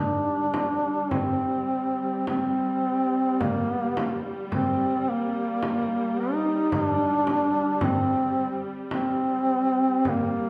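A mellow duduk sings a mournful Caucasian folk lament up front, its vibrato and scooped notes moving freely in a rubato triple metre over a rich, smooth bowed string drone, while a deep, vintage-toned frame drum joins at 0.5 seconds in this solemn fragment set in the resonant reverb of a church or concert hall.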